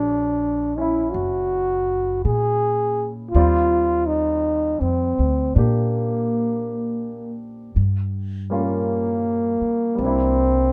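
A breathy trombone carries the melody up front in this romantic, intimate jazz ballad, its mellow, whispered tone and soft attack giving the solo line a close, confiding quality. Beneath it, a grand piano supplies polished, present accompaniment, while an upright bass played pizzicato adds a woody, steel-strung foundation that also sits near the listener. The tempo is a slow 54 BPM in 4/4 with a gentle swing on the eighth notes, set in Eb major and tuned slightly low to A4 = 438 Hz. The harmony moves from Bb7alt to a lush Ebmaj13 at 3.4 seconds, then through Gm7b5 to C7 at 10.0 seconds. Light reverb wraps the ensemble in a soft sense of space across this brief 10.7-second excerpt, which is cut from a longer piece.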